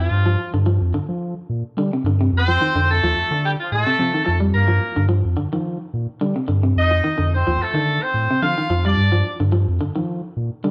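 Joyful and driving, this afrobeat passage, cut from a longer piece, rides a lightly swung sixteenth-note feel in 4/4 with the sound of a band playing live in one large studio room. A punchy vintage horn section carries the melody up front, with octave doubling, light vibrato and tight pop-style phrasing, before dropping out at 9.4 seconds. Underneath, a saturated sub bass sits equally forward, its deep, thick tone striking with a fast attack and sustaining through the passage. A clean, picked semi-hollow electric guitar enters at 0.3 seconds with bright arpeggios, set a little further back and coloured by spring reverb. The harmony moves from G7(no3) through F13 and Gm7, back to F13, and returns to G7(no3) near the close, all wrapped in a moderate room reverb.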